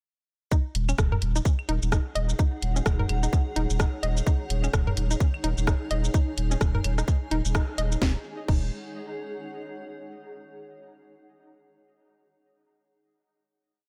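A tight, up-front kick drives a four-on-the-floor pulse at 128 BPM in 4/4, with a 59% swing on the 16ths giving this short minimal techno piece in Eb minor a hypnotic, quirky gait from 0.5 seconds. Programmed hats, shaker, rim and a cracking snare from a layered garage kit set the backbeat, capped by a crash, while dry analog-toned claves and a low tom click and blip in cross rhythm in the background under analog delay. A deep, saturated sine sub bass holds Eb1 in an off-beat pattern, pumping against the kick. Over it, a hollow, bouncy square-wave pluck repeats a 16-step sequence, detuned with a noise layer, chorus, dub echo and a gritty vintage 12-bit sampler edge. From 1.8 seconds a cloudy granular pad with its own reverb drifts through slowly shifting chords starting on Ebm7, and it carries on as the final chord from 8.0 seconds in a dry, echo-heavy mix.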